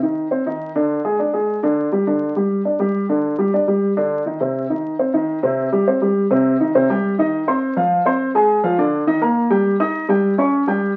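Latin piano music with a driving, danceable mood, this short cut from a longer piece features a solo baby grand that sits up front with a dark, mellow tone from 0.0 to 10.9 seconds. The harmony opens on a Cmadd9 and moves through suspended, open-fifth and minor chords, then shifts at 6.7 seconds into a second section that passes through Fm, a diminished chord and Eb. A club reverb surrounds the piano, and the whole recording carries the crackle of a very old 78 rpm record.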